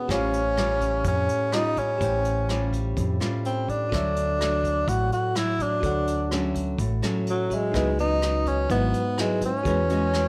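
Bossa nova in a sunny, breezy mood, this fragment of a longer piece puts an up-front tenor saxophone at its center, mellow in subtone with vibrato, scooped notes and a plate-reverb sheen, over fingerpicked classical nylon-string guitar, a bell-like tine electric piano sitting in the background, a round, punchy fingered electric bass and a vintage brush kit of hi-hat, kick and rim click with a rolled-off top, all moving from A7alt through Dmaj7 and C#m11 to E69 in a large studio room.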